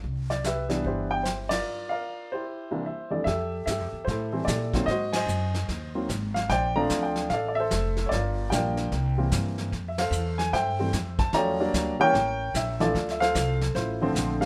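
Upright bass and a brushed drum kit open this relaxed jazz piano trio at a swinging 149 BPM, with the thumpy, gut-strung bass and the dark-cymbaled, small-room kit soon joined by an up-front upright piano carrying the melody from 0.3 seconds. After a brief break and a shift from C major to F major at 3.3 seconds, the band hits shared accents as the harmony moves through rich chords such as Fmaj9, Bbmaj9 and A7b9. The piano sounds woody and polished with long sustain, the kick is punchy, and light reverb gives the short, cut-out passage a gentle, cosy glow.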